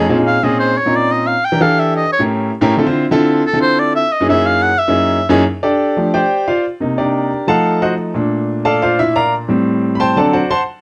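A straight 4/4 pulse at 179 BPM drives this brisk, danceable jazz fragment in F major, cut from a longer piece and carrying a sophisticated air. A baby grand piano plays accompaniment throughout, voicing rich harmonies such as Bbm11, A7b9, Gb13 and F69, and its intimate, natural sound keeps a long sustain with audible action noise. Up front, an oboe in a classical style carries the melody from 0.3 to 5.3 seconds, its clear tone ranging between A4 and G5. From 5.5 seconds the piano takes the solo spotlight, moving through Cm9, F7b9, Bbmaj9 and on to D7. Moderate studio reverb and a dark, warm production surround both instruments.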